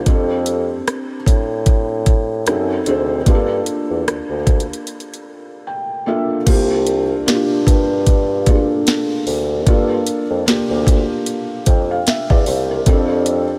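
A trap drum kit sits up front in this moody, sensual contemporary R&B excerpt, its knocking kick, sharp snare, bright hi-hats, rim clicks and crash cymbal carrying an electronic, produced sheen with a tape-warm character. The groove moves at 75 BPM in 4/4 with a light 16th-note swing, set in G dorian and tuned slightly high to A4 = 442 Hz. Beneath it, a bassoon takes the bass role in a classical style, its dark tone rounded off by a smooth top. A felt-muted upright piano supplies the accompaniment, soft and intimate, with thick felt, audible action noise and a vintage character, all bathed in a lush chorus. The harmony passes through F6, F#dim7 and Gm7, then after a break from 4.9 s, where the piano plays a fill starting at 5.3 s, a new section opens at 6.5 s on C7sus4 before settling back to Gm7 and F6. Light reverb and a studio ambience give the mix a sense of space.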